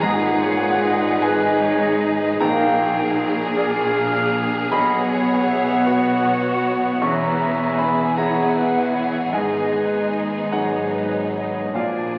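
Moving at a slow, rubato 52 BPM in 6/8, this bittersweet, moving cinematic film score in G# minor unfolds over 12.2 seconds, its chords passing from G#m through A#7, Bsus2 and E before returning to G#m. A rich, bowed violin section carries the melody from the background while a mellow flute ensemble, a smooth solo clarinet and a second, softly attacked violin section weave supporting lines; a clear concert grand piano with deep bass and a close viola section accompany, a vintage-toned French horn section holds sustained chords, and a distant cello section and woody double basses anchor the bass. Everything sits in a wet scoring-stage reverb with a 2.1-second decay, colored by the crackle of a very old 78 rpm record.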